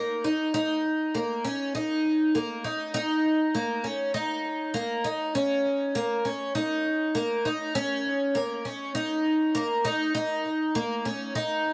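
A straight, even 4/4 pulse carries this short dream pop passage, lifted from a longer piece and lasting just under 12 seconds. A picked twelve-string acoustic guitar plays alone throughout, its notes held to a narrow band between A#3 and D#4. The octave-doubled strings give the guitar a shimmering quality, and a lush chorus and tape echo on the instrument add to the dreamy, floating mood. The guitar sits up front in the mix with a light touch of reverb around it. Despite those effects, the recording itself has a dry, gritty character.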